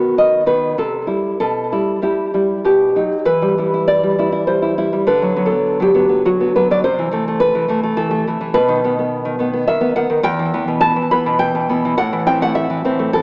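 Melancholic and intimate, this excerpt from a longer romantic piece for solo classical guitar in E minor moves in a rubato 3/4 at 94-108 BPM, its dark, full-bodied fingerpicked nylon-string guitar sitting up front with tape echo, ranging from E2 to B5 through chords like Em, Bm/D and Am/C, heard in a moderate recital hall with a worn, warbling cassette-tape pitch drift and small speaker sound, with the second section beginning at 3.3 seconds.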